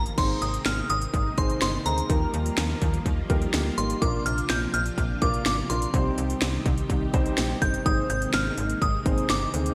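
Wistful and nostalgic, this synth-pop excerpt at 125 BPM in 4/4 sets a glassy, crystalline FM bell melody with chorus, tremolo and digital delay over shimmering string-machine violin chords, a snappy slap-like FM bass, a warm concert grand piano with lush chorus, and a punchy, up-front house drum kit with cracking snare, crisp hats and gated reverb, the harmony moving through Abadd9, Ebadd9, Bbadd9 and Cm in a bright 1980s-style digital production bathed in hall reverb.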